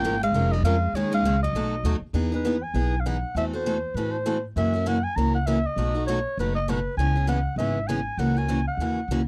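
Acoustic string swing in the jazz manouche style, lively and charming, where a raspy, growling clarinet carries the melody up front with vibrato and scooped notes while a bright picked parlour guitar drives the accompaniment, a second picked steel-string guitar adds a brief line only until 2.0 seconds, and a woody, thumpy pizzicato upright bass on gut strings anchors the bass in a dry, close 1970s-style studio sound with light reverb.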